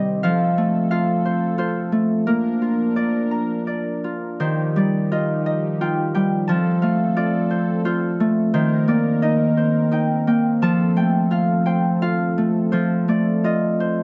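The sound is dry and close, with little reverb, like a 1970s-style studio recording. This is a gentle, tender children's lullaby in 3/4 at 87 BPM, played with a loose, rubato feel, and it is cut from a longer piece. An acoustic Celtic harp carries the melody up front for the whole 14.0 seconds, fingerpicked and ringing, ranging from C3 to Bb5. Behind it, a brassy analog pad holds sustained chords at a much lower level; its detuned sawtooth tone is bold and bright, with a soft attack, chorus, vibrato and a filter sweep. The harmony moves from F to Bb, then at 4.4 seconds to Ebadd9, F, Cm7/Eb and back to F, giving the cradle-song a soft, tender lilt.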